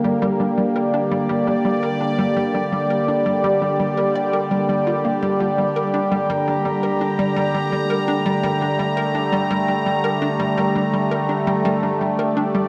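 A straight 4/4 pulse at 84 BPM sets a slow, hypnotic pace for this short cut from a longer piece of ambient, sequencer-driven space music in G minor, resting on a single Gm chord throughout. Up front, a sweeping, resonant sawtooth pad holds sustained chords from D3 to Bb5, its detuned, evolving tone shaped by a slow attack, a filter swell, a long release and a chorus effect. Beneath it, a hollow square-wave pluck repeats a bouncy riff between G3 and D5, with a fast attack, short decay, a sub octave and a noise layer adding body, plus subtle chorus and delay. Both synths carry a bright edge, and the pad sits louder in the balance than the pluck. A wet plate reverb with a 2.9-second tail soaks the dreamy mix, giving the 12.7 seconds an expansive atmosphere.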